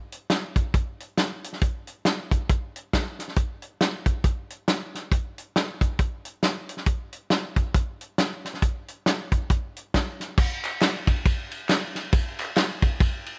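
A dry, mid-forward soul drum kit sits up front, its tight kick, medium-tuned snare, hi-hat, ride and crash carrying a swung gospel groove with a hopeful, jubilant lift and a rolled-off top. At 10.4 seconds the music moves into a new section as a compressed, saturated layer of tube shaker, tambourine and group handclaps joins in the background. Light reverb surrounds this short fragment of a longer piece, which ends at 13.4 seconds.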